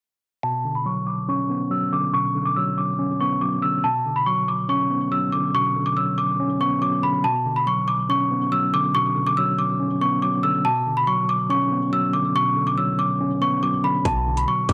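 Drill-style hip hop in B minor at 141 BPM with a half-time feel, this dark, menacing passage is cut from a longer piece. A worn, bell-like celesta carries the melody up front from 0.4 seconds, its delicate, sweet tone struck by hard felt hammers, slightly out of tune and trailed by tape echo through a low-pass filter. Beneath it, a mellow tine electric piano plays accompaniment, clean and heard through built-in speakers, also filtered, opening on a Bmadd9 chord while a filter sweep runs until 7.2 seconds. Only at 14.1 seconds do the drums and bass arrive: a drill kit of hard-clipped kick and metallic hats, overdriven and roughened with vintage 12-bit sampler grit, alongside a deep, sine-toned 808-style bass with a fast attack and long decay. The whole recording has a dry, gritty hardware character with transformer saturation and only light reverb.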